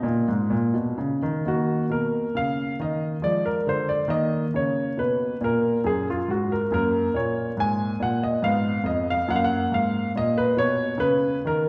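A clear, intimate grand piano sits up front in a wet recital-hall reverb, its natural tone carrying audible action noise from the instrument itself. This short cut from a longer piece is a baroque-style suite movement in Eb minor, moving in a rubato 3/4 at about 69 BPM. The mood is grave yet flowing. The solo piano spans F2 to Ab5, opening on a lone Eb5 before a brief opening passage gives way at 1.5 seconds to a longer second section. There the harmony moves through a diminished chord over F, then to Eb minor, then to Gb major and another diminished colour before settling on Gb again near 9.3 seconds, as the hall's lingering tail surrounds each phrase.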